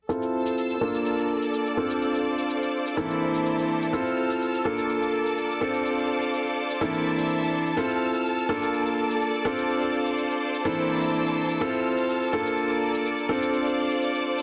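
A straight, tape-warm analog shaker drives this energetic, bittersweet piano house fragment, cut from a longer piece, as a woody, up-front upright piano riff soaked in dub echo and a biting studio violin section holding sustained chords both ride a filter sweep throughout, while a lush symphonic string section adds smooth vibrato texture over a looping Fmaj7, Bbmaj7, Dm7, C13/E progression, all set in a roomy hall reverb and a dense, heavily limited modern master.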